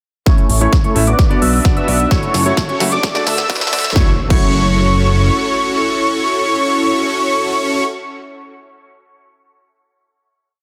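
A punchy, up-front four-on-the-floor electronic kick drives this powerful, anthemic festival progressive house piece in F# minor at 130 BPM, joined by a crisp big-room kit fill of hats, snare and crash, a fat, detuned off-beat analog bass, huge, lush supersaw chords in a dotted rhythm under a filter sweep, a thick sawtooth unison lead arpeggiating an octave above them, a present grand piano and a very quiet riser and impact, with the build giving way at 4.0 s to a final F#m7 chord that the pumping, echoing supersaws, lead and piano hold in a lush hall reverb after the drums stop at 4.4 s, until 7.8 s.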